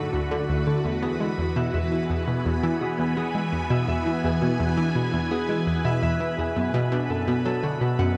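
Luminous and cosmic, this short excerpt of ambient, sequencer-driven space music at 84 BPM sets a round, wave-folded analog pluck riff with chorus and delay up front against a swirling string machine holding phased, chorused chords, fingerpicked Celtic harp arpeggios ringing through delay, and a resonant, bubbling stepped-filter texture, all moving from D to E7 and then Bm7 at 6.6 seconds inside a huge ambient reverb with a cassette-tape sound.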